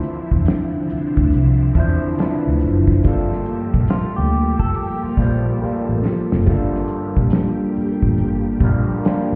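A slow, late-night R&B and neo-soul groove in G minor at 70 BPM opens with a barky, overdriven tine electric piano, gritty through a combo amp and treated with phaser, over a lush sawtooth string machine with a sub octave and ensemble chorus holding soft-attack chords. A cloth-damped drum kit of kick, snare and hi-hat sits dry and thuddy, with a fat snare, a tight kick and a rolled-off top, in a swung 16th-note feel. At 0.3 seconds a vintage foam-muted fingered bass enters, round, punchy and up front alongside the electric piano. The harmony moves from Dm9 to Gm9, and from 3.9 to 6.3 seconds a slightly broken-up, compressed lo-fi guitar adds a soft second line. A drum fill at 5.6 seconds leads into a repeat of the opening section, and the whole mix sounds muffled, as if heard through a wall, with stone room reverb lending a soulful, after-hours haze to this short cut from a longer piece.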